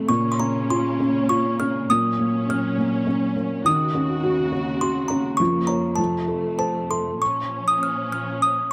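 A delicate, tinkling music box carries the melody high and up front, its bright, slightly out-of-tune notes sounding close and dry from a small box. This is a wistful, dreamy children's lullaby in Bb harmonic minor, moving in 3/4 at 101 BPM with a loose, rubato feel. Beneath it, a felt-muted upright piano plays the accompaniment with a soft, mellow, dark tone, its short sustain and audible action noise giving an intimate closeness until it stops at 7.2 seconds. A rich, lush string section holds sustained bowed chords with smooth, even vibrato throughout, carrying the harmony through Bbmadd9, Gb/Bb, Ebm7 and a turn to F before settling on Bbm. The sound is that of a dry, close 1970s-style studio recording with little reverb, cut from a longer piece.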